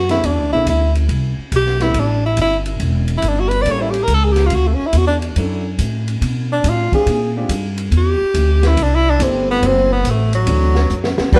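A swinging 4/4 at 141 BPM drives this joyful big band jazz passage, cut from a longer piece, where a breathy tenor saxophone sits up front with vibrato, a soft attack and scooped notes as it solos over a woody pizzicato upright bass, a concert grand piano with deep bass and long sustain, and an open drum kit with dark cymbals, a high-tuned snare and a boomy kick. The harmony moves through rich chords such as E7b13, A7b9 and Bm7b5, and a drum fill at 10.9 seconds leads into a brief sustained chord from the saxophone section at 11.3 seconds. Light reverb places the band further back in the room.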